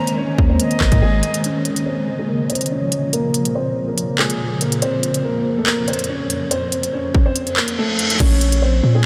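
Menacing and cold, this half-time drill excerpt in Bb minor at 142 BPM is led by a dark, boxy concert grand piano carrying the melody through a low-pass filter and tape echo, joined for the first 1.4 seconds by an airy silver flute with vibrato, over a blurred, evolving granular pad holding sustained chords. A tape-warm electronic drill kit sits up front with a hard-clipped kick, crisp hats, handclaps, rim clicks and crash, while a deep sine 808-style bass punches in briefly early and returns at 8.2 seconds. A filter sweep runs from 1.4 seconds, the kick drops out at 7.4 seconds just before a reverse cymbal rises at 7.5 seconds, and the whole mix is soaked in a huge, dreamy ambient reverb.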